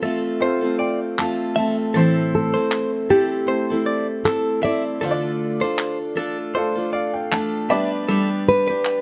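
A thumb-plucked nylon-string guitar carries the tender, wistful melody of this lightly swung acoustic pop excerpt from the first moment, set over a full-bodied picked steel-string guitar, clean, compressed arpeggios on a direct electric guitar, and a dark, worn, slightly detuned upright piano whose woody, intimate fills, complete with audible action noise, come at 0.0 and 6.6 seconds, while crisp, close group handclaps join at 1.2 seconds over chords moving from F to Am, Dm and G with little reverb.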